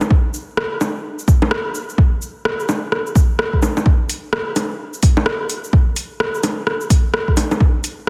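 Future garage at 128 BPM in 4/4, with a swung sixteenth-note feel that gives this short excerpt a nocturnal, ghostly air. An electronic kick drum sits up front, deep and overdriven, layered and re-recorded in a large room, entering at 0.1 seconds and running to 7.7 seconds. Around it, a deep house drum kit of bongos, metallic hi-hats, rim click and shaker plays from 0.0 to 8.0 seconds, also overdriven and captured in a large room, sitting a little lower than the kick. The two percussion parts carry the whole passage on their own, with the kick more prominent. A light reverb surrounds the parts, and vinyl crackle adds a dusty grain to a dense, heavily limited modern master.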